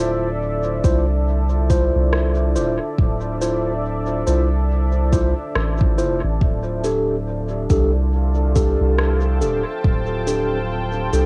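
A hazy, cassette-worn home recording with little reverb opens this meditative ambient dub excerpt, moving at a slow 70 BPM in 4/4 with a gentle sixteenth-note swing. A deep, moody pad built from detuned sawtooth and sine layers holds a sustained F6/D chord throughout, its slow attack and long release softened by chorus and its own reverb. Over it, a mellow, clean tine electric piano places stabs that trail into dub echo, sounding as if played through built-in speakers. Underneath, a round, soft sub bass sits up front, anchoring the low end from the start. An electronic kick drum, re-recorded in a large room, enters at 0.8 seconds alongside a faint electronic shaker and rim click, which carry their own dub echo. The kick drops out at 10.0 seconds, leaving the shaker, pad, piano and bass to carry the final moment of this cut from a longer piece.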